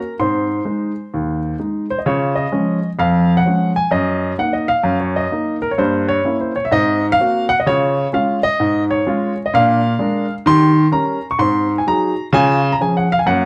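Stride piano jazz with a swinging, exuberant mood, played on a solo upright piano that sits up front and sounds woody and intimate, with audible action noise and long sustain across a span from Eb2 to Db6. The brief excerpt runs 13.5 seconds, moving from an Ab pickup through a diminished passing chord and a Bb7, Eb7, Ab7 run that comes home to Db at 12.3 seconds. A dark production and a wet club reverb give the polished playing the feel of a jazz club.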